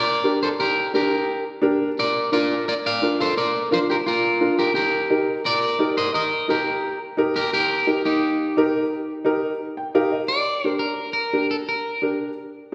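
An edgy electric guitar, twangy and slightly broken-up with spring reverb, carries the melody up front in this driving, passionate Latin excerpt at 173 BPM, moving over G minor, B-flat and E-flat harmony. A dark upright piano accompanies from 0.2 seconds, mellow and woody with audible action noise and a slightly detuned, intimate tone, and adds a brief fill at 9.6 seconds before the next section opens on G minor at 10.3 seconds. Both sit inside a lush recital-hall reverb that gives the pair a resonant, churchlike space.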